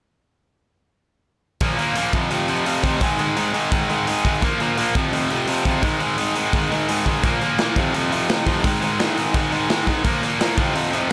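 A pair of tight, bright electric guitars sits up front, both picking a distorted riff between 1.6 and 11.1 seconds. This is an upbeat, energetic punk rock cut from a longer piece, driving along at 171 BPM in a straight 4/4 feel in Ab major. The riff cycles through power chords on Bb5, F5 and Ab5, coming round again and again through the single section. A big acoustic rock drum kit plays from 1.6 to 11.0 seconds, with a punchy kick, a medium-tuned snare and hi-hat placed up front, its sound carrying the air of a large room. The overall mix is dry, with little reverb.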